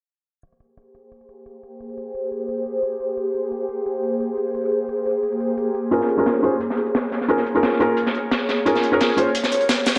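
A crisp, tape-warm electronic hi-hat ticks in the background from 0.4 seconds under a filter sweep, joined at 1.8 seconds by an ethereal, detuned pad with chorus and phaser holding Abmaj9, before a felt-muted upright piano with digital delay and a gritty, saturated breakbeat kit come up front at 5.9 seconds on Bbm7, giving this dreamy, uplifting liquid drum and bass excerpt at 175 BPM in Ab major a lush hall glow.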